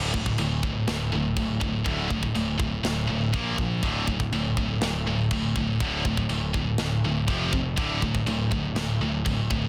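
Driving straight 4/4 at 122 BPM anchors this aggressive, dark heavy metal excerpt in D minor, a short slice cut from a longer piece that runs just under ten seconds. Two bright, high-gain distorted electric guitars carry the riff together, picked in the low register, with one sitting up front, their power chords moving from D5 to Bb5 and back, then later to F5 before returning to D5. A picked electric bass holds down the foundation beneath them, its tone warm and captured both direct and amped. The tight metal drum kit, heard from 0.1 s, brings kick drum, a medium-tuned snare and china cymbal, sounding gritty and saturated in a big room, mid-forward and up front, with soft clipping on the kick. Light reverb surrounds a dense, heavily limited modern master.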